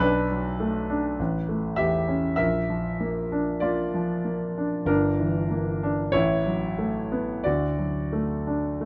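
This is a romantic classical nocturne for solo piano, tender and serene, moving at a slow 44-51 BPM in 4/4 with a freely breathing rubato feel. The concert grand sits up front with a clear, open tone, deep bass reaching down to G1, and short sustain, all set in a moderate studio reverb within a dark production. Drawn from a longer piece, the brief 8.9-second passage drifts through chords like Bm7, Bb and Em7b5/G before settling on D.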